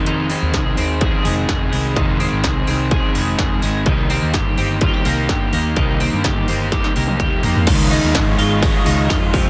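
A raw, overdriven garage guitar and a clean, compressed twelve-string electric guitar playing chorus- and tape-echo-treated arpeggios open this bittersweet, wistful jangly indie pop clip in F minor at 126 BPM, over a dark, foam-muted fingered bass and an up-front industrial drum kit with a distorted kick, clanging snare and crisp hats. The chords move from Fm7 to Cm7, and a drum fill at 6.7 s leads into a shift to Dbadd9 at 7.7 s. At 7.9 s a hollow, flute-like, warbling pad with a slow attack enters in the background, all within a dry, dense and heavily limited mix.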